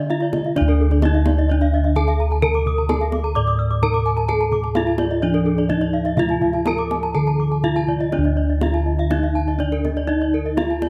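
Brilliant and shimmering, this Balinese gamelan passage is cut from a longer piece and moves with an uneven sense of beat in four. A bronze metallophone carries the melody up front, its tone close-miked, dry and full. Two further bronze metallophones spin arpeggios above it, struck with horn mallets, bright and ringing, their paired tuning producing a shimmering beating. Beneath them, bossed gongs hold the bass with a round, mellow, airy sound from padded beaters. The kendang sits in the background, tight and played with soft hands in a live room. Light reverb frames the detailed recording, and a new section begins at 8.1 seconds.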